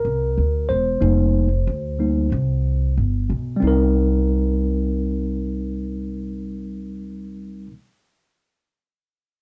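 Cool and smoky, this short swung jazz-hop clip features a worn, slightly out-of-tune tine electric piano soloing over an F9sus4 chord before the harmony shifts to Cm7 at 3.6 seconds, while a woody, thumpy pizzicato upright bass sits up front beside it in a dry, close 1970s-style studio sound.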